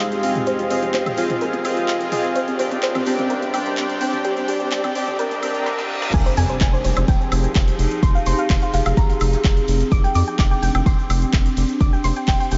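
Expansive and bittersweet, this progressive house passage moves at 127 BPM in F dorian, cut from a longer piece and bathed in a dreamy, reverb-soaked ambience with its top end rolled away. A bright, morphing wavetable pad holds sustained chords through a phaser while a soft, round pluck runs arpeggios through lush chorus and delay, both pumping against the sidechain as Fm7 gives way to Csus2/F. During the build-up, a filter sweeps across the pluck, a smooth supersaw adds up-front stabs from 0.2 s, and electronic toms and congas sit in the background, with a deep house kit of woody snare, dark hats, handclaps, woodblock and crash, plus a grainy, very quiet tube shaker. A riser and reverse cymbal, kept very quiet, lead into a drum fill before the drop lands at 6.1 s with an impact. There a deep, layered electronic kick and a round, wave-folded analog bass sit up front, while a very quiet vintage kit of snare, hi-hat and tambourine adds a natural studio-room texture underneath.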